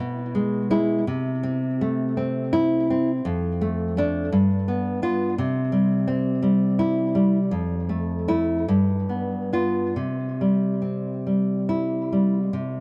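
Wistful and intimate, this romantic excerpt for solo classical guitar moves in a slow, rubato 6/8 at 45-58 BPM, starting in A minor and settling into C major from 3.2 s. The fingerpicked nylon-string guitar sounds full-bodied and up front, with tape echo, its chords passing from Dm/F through G7 to C, then Fmaj7 and G7 before returning to C at 10.0 s. The close, dry studio sound has a 1970s character, and the piece is tuned slightly low, with A4 at 437 Hz.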